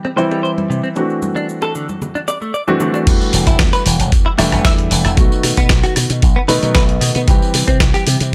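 A straight nu-disco groove opens with ringing bongos, cabasa and congas beneath a warm, up-front baby grand piano that pumps with sidechain and delay, and a bright, twangy clean guitar riff softened by a lush chorus and low-pass filter. At 3.1 seconds the drop arrives as the hand percussion falls away, bringing in a punchy slap bass with envelope filter and tube saturation, a gritty sampler-style soul kit with crash, hi-hat, rim click, snare and tambourine, and a thumpy electronic kick. The groovy, sleek excerpt is wrapped in filtered digital ambience.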